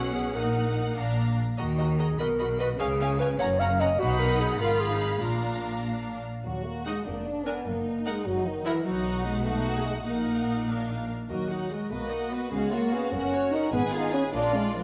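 A quick classical-period movement for symphony orchestra, this passage from a longer piece moves at 99 BPM in 6/8 and sits in Eb minor, with an urgent, dramatic mood. A violin section carries the melody with an expressive, close vibrato sound, while a second violin section plays a focused second line beneath it. A dark solo clarinet joins that second line at the start and stops at 5.8 seconds, and the French horn section enters at 6.4 seconds with warm sustained chords placed up front. The viola section gives smooth, even accompaniment from a more distant position, and the bass is anchored by a lush cello section with a smooth top and an intense, clear double bass section. The harmony keeps circling through Ebm, Bb, B, Db, Gb and a diminished chord over Ab, heard twice across two statements of the same section. A recital hall reverb wraps the orchestra, and a worn old cassette tape character adds a warbly pitch drift to the whole sound.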